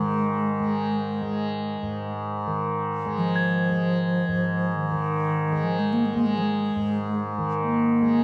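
A mellow, hollow bass flute carries the melody in this calm, free-time world meditation piece, its airy tone touched with vibrato, soft attacks and lifted highs. Beneath it, a softly plucked tanpura holds a buzzing, up-front drone, while quieter crotales struck with hard rubber mallets add a bell-like, ringing texture high above. A wet concert-hall reverb gives the peaceful piece a spacious glow, and all three parts sound together throughout this short excerpt cut from a longer work.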